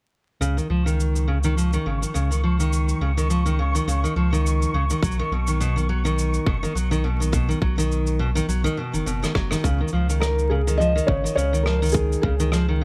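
Vinyl crackle and a light reverb frame this short, playful folktronica excerpt, set at 104 BPM in Db major with a gentle swing on the sixteenths. A picked steel-string acoustic guitar carries the arpeggios up front, its full-bodied jumbo tone roughened by vintage 12-bit sampler grit, a low-pass filter and digital delay. Beneath it a round, deep sine sub bass holds the low end with a filter sweep through the opening stretch, while muffled cabasa and rim click, played with brushes in a small room, tick along with a rolled-off top. A flickering, granular texture hovers in the background with its own reverb, and a tight, tape-toned electronic kick joins at 5.0 seconds as the harmony shifts from Dbadd9 to Cb. After a drum fill the Dbadd9 returns at 9.6 seconds, and a felt-muted upright piano enters at 10.2 seconds with an intimate, mellow melody that gives the close a cozy, warm glow.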